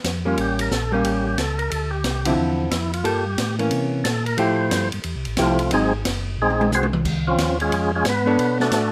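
Soulful and bluesy, this short cut from a longer soul jazz organ trio performance swings in 4/4. A mellow tonewheel organ holds down the bass line, its round, dark tone colored by chorus vibrato and a slow rotary speaker, while an acoustic jazz kit with shaded cymbals, a high-tuned snare and a boomy kick plays throughout, adding a fill at 6.4 seconds. Up front, a second tonewheel organ takes the solo from the opening moments, full and clean with key click and second-harmonic percussion turning through its own slow rotary speaker. A fingered hollow-body electric guitar comps alongside until 5.9 seconds and returns briefly near the end. Chords such as A7b9, Dm9 and Fmaj9 give the harmony a rich jazz color, and the rough home-demo mix sits in moderate studio reverb.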